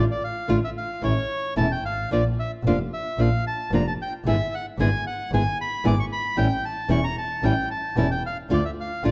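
A dark, lightly reverberant production frames this dramatic, sultry rubato tango fragment in 4/4, where a reedy, vintage, band-limited bandoneon carries the melody up front, a small fingerpicked nylon-string guitar gives acoustic accompaniment, and a single bowed double bass, clear, nasal and earthy with light vibrato, holds the low line close at hand through the chords' turn from Dm/A to its closing Dm at 8.5 seconds.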